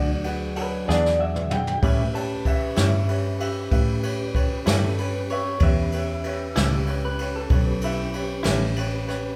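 Opening on an E7 chord that moves to A7 at 1.8 seconds, this laid-back, gritty slow blues at 63 BPM in 12/8, cut from a longer piece, sets a warm, slightly broken-up electric guitar through a small old amp over a bright, woody upright piano, a mellow, flute-like tonewheel organ turning through a slow rotary speaker, and a dark, round, foam-muted electric bass, with a boomy, roomy brush drum kit entering at 0.2 seconds and playing a fill from 0.9 seconds as a hollow-body electric guitar joins with tremolo, all gathered live in one room with moderate large-studio reverb.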